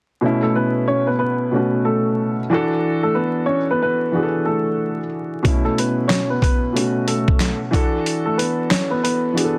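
Gritty and tough, this boom-bap hip-hop fragment moves at 92 BPM in B minor, with a swung 16th-note feel in 4/4. A dark grand piano carries the accompaniment from 0.2 s, its mellow, intimate tone carrying audible action noise and a cassette-tape character, while a woody upright piano plays the melody just after, both sitting up front with a vintage, filtered smoothness. The harmony alternates between B9sus4 and E9sus4. At 5.4 s a sampler-style drum kit arrives with a thumpy kick, a medium-tuned snare, hi-hat and handclaps, sounding compressed, pitched down and tape-warm. The kick drops out at 8.1 s, leaving the snare, hats and claps over the pianos. A small room ambience, vinyl crackle and a dense, heavily limited modern master give the cut its dusty yet loud finish.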